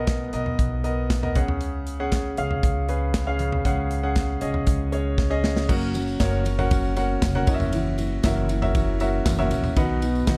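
A straight 4/4 pulse at 118 BPM drives this warm, anthemic piano-led pop passage in F# major, with a clear, up-front grand piano and a woody pizzicato upright bass moving from Bmaj7 to C#sus4 while a modern studio kit adds a punchy kick, bright cymbals and handclaps. A drum fill at 5.2 seconds leads into the next section at 5.7 seconds, where a full-bodied fingerpicked steel-string acoustic guitar enters with a riff and a jingly tambourine sits in the background over F#, F#7 and B. Light reverb and studio ambience give the cut from a longer piece a dark production.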